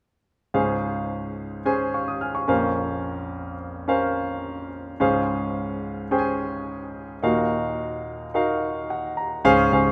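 A clear baby grand piano opens this short pop excerpt at a moderate 108 BPM in Db major, sitting up front with a present, polished tone as it carries the accompaniment across a broad span from deep bass notes to bright upper register. Its chords move from Dbmaj7 to Bbmadd9, back to Dbmaj7 and on to Ebmadd9, giving the passage a hopeful, anthemic lift. The piano adds a fill from 8.6 to 9.5 seconds, closing out the section. Just before the cut at 9.9 seconds, a vintage muted picked electric bass slips in at 9.4 seconds on a low Db, dark, round and amped, tucked into the background. A lush hall reverb lends spaciousness to the rough home demo mix.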